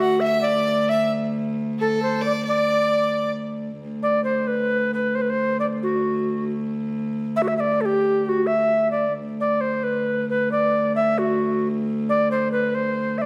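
Set in a straight 6/8 with the beat felt in dotted quarters, this medieval fragment carries a rustic, ancient mood and is cut from a longer piece. A reedy bass recorder leads the melody up front, its woody tone marked by a crisp, chiffy attack, vibrato and rolled-off highs. A clear, focused fiddle adds a bowed second line above it with light vibrato, then falls away at 3.3 seconds, just before the music moves into a new section at 3.8 seconds. Beneath both, a single fretted viola da gamba holds a low drone throughout, intimate and close, with a soft attack, an airy bow and a ringing, rich resonance. The whole is bathed in the reverberation of a recital hall, giving the small ensemble a spacious, echoing setting.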